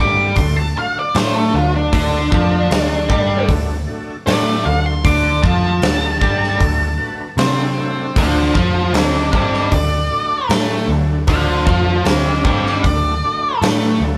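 Raunchy and swaggering, this blues rock and southern rock power-trio excerpt rolls along at 77 BPM in a straight 4/4 over a D chord, tuned to A4 = 445 Hz. An up-front, dark octave-fuzz lead guitar solos across the passage above a double-tracked, cranked stack guitar riff, a round, foam-muted picked bass, and a huge acoustic arena kit with a punchy kick and medium-tuned snare that enters at 0.4 seconds. Behind them, a thick, gritty tonewheel organ holds sustained chords through a slow rotary speaker and chorus vibrato, all captured as a band playing live in one room with a moderate large studio reverb.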